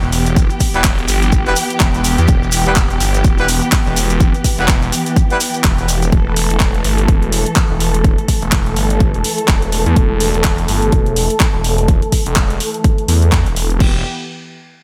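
Swung sixteenths in 4/4 drive this gritty, bouncy bass house passage, with a punchy, up-front electronic kick, a tape-warm house kit of crash cymbal, handclaps and hi-hat, a thick, swirling detuned saw bass with phaser and sidechain pumping under a filter sweep, a dark, woody studio string section holding distant, low-passed chords that also pump and sweep, a bright, jazz-style horn section stabbing in the background through digital delay until 5.4 seconds, and a grainy shekere that drops out at 6.1 seconds.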